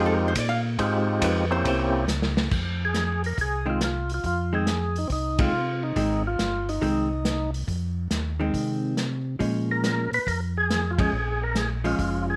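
A lightly reverberant, intimate mix puts the organs and drums up front in this bluesy, late-night soul jazz organ trio excerpt, cut from a longer piece and swinging in 4/4 at 139 BPM in F minor. A dark, clean, compressed hollow-body electric guitar opens with a brief picked solo over Fm7 and C7b9, then stays on as accompaniment. The vintage drum kit arrives at 0.4 seconds with a lo-fi, muffled small-room sound, dusky cymbals and a punchy kick, and its fill carries the band into a longer passage that settles on Fm7 before moving to Bbm7. The percussive tonewheel organ carries the melody with a full tone, key click and second-harmonic percussion through a slow rotary speaker. Underneath, a mellow, round tonewheel organ plays the bass line, also with key click and slow rotary. The whole band hits accents together at 5.3 and 10.9 seconds.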